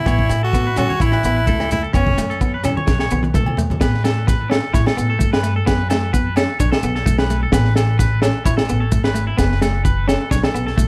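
A raspy, forceful tenor saxophone opens this carefree, danceable highlife guitar band passage, its vibrato-laden pop-style solo sitting up front with tape echo before it drops out at 2.4 seconds. Two slightly broken-up electric guitars carry on beneath it: one picks twangy accompaniment chords, while the other, compressed and touched with tape echo, spins out picked arpeggios higher up. A growly, woody upright bass played pizzicato anchors the low end, and a crunchy breakbeat drum kit with a punchy kick, high-tuned snare and rolled-off top drives the lightly swung groove, including a drum fill that closes the opening section. Ringing agogo bells sit in the background, and close, grainy, mellow maracas add shimmer, while low-tuned congas played with soft hands join at 0.8 seconds and fall away at 3.8 seconds. The harmony circles through Aadd9, F#m and B-rooted chords in light reverb, and the passage is cut from a longer piece.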